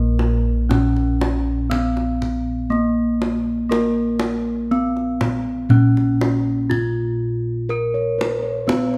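Hypnotic and stately, this short cut from a longer Javanese gamelan piece moves at a steady 60 BPM in a straight 4/4, with a light reverb around it. Up front, a bronze metallophone carries the melody with a ringing, boxy, wooden-mallet tone, while bossed gongs struck with padded beaters lay down a round, beating, mellow bass, and a tight, vintage-sounding kendang played with hard hands joins at 0.2 seconds. Near the end, at 7.9 seconds, a second set of bossed gongs adds dark, smooth arpeggios in the background, treated with tape echo.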